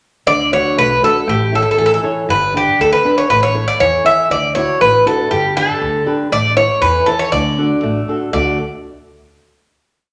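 A metallic, up-front Greek bouzouki, picked on double strings with some octave-doubled courses, carries an ornamented modal melody through this short, sunny and relaxed Greek folk piece in a steady 2/4. Beneath it, a dark, fingerpicked flamenco guitar plays an oompah of bass notes and chord figures over a simple D, A and G progression with a brief Dadd9 colour. A woody, growly pizzicato upright bass marks root and fifth on the main beats, and all three play together from 0.3 to 8.6 seconds in a wet, large studio reverb, settling on a final chord at 8.3 seconds.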